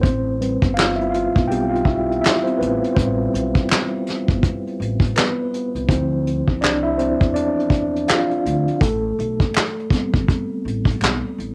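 A hazy home recording on cassette, touched with light reverb, opens this nostalgic lo-fi hip hop fragment in A minor at 82 BPM, with a lazy 16th-note swing in 4/4. The mellow tine electric piano sits up front and carries a solo across the whole 11.5 seconds, its clean tone coming through built-in speakers, softened by a low-pass filter and colored by cassette tape, moving from Am9 to Dm9 at 5.9 seconds and back to Am9 at 8.8 seconds. Beneath it, a woody pizzicato upright bass with steel strings holds the low end. A vintage brush drum kit recorded in a small room stays forward in the mix, pairing a tight kick and medium-tuned snare with hi-hat and handclaps under a rolled-off top. Very quiet human finger snaps from a live room enter at 0.8 seconds and drop out at 11.2 seconds, adding a faint, intimate pulse to this brief, dreamy snippet.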